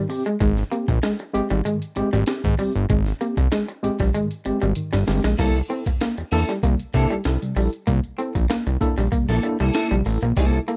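Funk at 96 BPM in 4/4 with a straight feel, playful and strutting, in C mixolydian, heard as a short cut from a longer piece. From the start an electric guitar through a small old amp picks a lo-fi, slightly broken-up riff between G3 and C4, while a worn, slightly out-of-tune tine electric piano plays mellow stabs through a combo amp with medium tremolo over an Abmaj7 chord. A breakbeat sampler-style kit enters at 0.1 seconds, gritty and compressed, with a thumpy kick, a high-tuned snare, hi-hat and crash, and a fat analog bass joins at 0.4 seconds, its detuned sawtooth tone saturated and thick with a fast-attack filter pluck and sustained, evolving notes, sitting loudest in the mix. A drum fill leads into the second section at 5.4 seconds, where the harmony moves to C13 and a clean, picked electric guitar adds accompaniment between Bb3 and A4, shimmering with ensemble chorus. The sound is dry and close, in the manner of a 1970s studio recording, with little reverb and every part placed up front.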